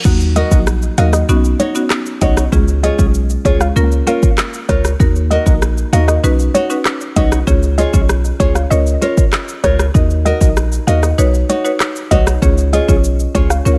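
Sultry and hypnotic, this dancehall excerpt in Eb minor moves at 97 BPM over an electronic afro-pop drum kit with a deep kick, metallic hats, handclaps, rim click, shaker and crash, a boomy 808-style bass, a woody buzzing marimba, dark fingerpicked nylon-string guitar arpeggios, and a soft round pluck melody coloured by chorus and tape echo, all cycling through Ebm, Badd9, Db and Bbm/Db in a digital ambience.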